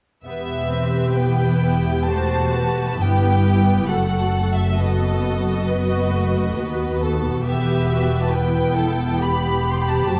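A slow, rubato pulse at 67 BPM in 4/4 carries this yearning, elegiac classical passage in E minor, cut from a longer piece, with the full string orchestra bowing together from 0.3 s to 10.2 s as the harmony moves from E minor to B7 over F# and back. Violins take the high melody with light vibrato above a second violin line, violas fill the middle with lush accompaniment, and cellos and woody double basses anchor the bass, the low strings sitting a little more prominently. The sound is dark and warm, set in a moderate scoring-stage reverb with vinyl crackle.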